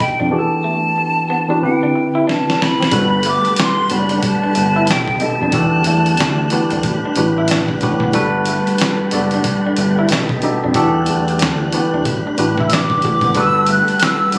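R&B with a neo-soul lean, warm and relaxed at 92 BPM with a swung sixteenth-note feel in G major. Sitting up front, a pure, hollow concert flute carries the melody with vibrato and a slapback echo, falls silent after about 7 seconds and returns at 12.7 seconds. Beside it, a worn, slightly out-of-tune tine electric piano plays the chords. A gritty, sampler-style drum kit with a thumpy kick, a fat snare, hi-hat and handclaps plays a fill that leads into the organ's entrance at 2.9 seconds, while a smooth sawtooth synth bass, a slightly broken-up lo-fi guitar in the background and the organ's sustained chords through a slow rotary speaker fill out the Em11, Gmaj9 and B7alt harmony in this phone-recorded, compressed cut from a longer piece.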